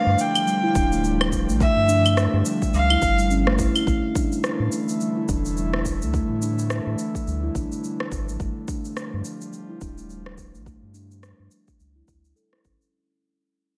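A swung sixteenth-note groove in 4/4 drives this warm, meditative organic downtempo excerpt: an overdriven electronic kick and an overdriven kit of shaker, claves and rim click, both sounding re-recorded in a large room, sit under a deep, round sine sub bass with tube saturation and sidechain pumping. A biting, earthy bowed kamancheh carries the melody up front with light vibrato, portamento and delay until 3.5 s. A mellow steel tongue drum rings out mallet arpeggios through delay, and an airy, breathy pad of detuned layers holds sustained chords with chorus and sidechain pumping. The mix carries light reverb and gently capped highs, and it fades out from 3.9 s to the end at 12.9 s.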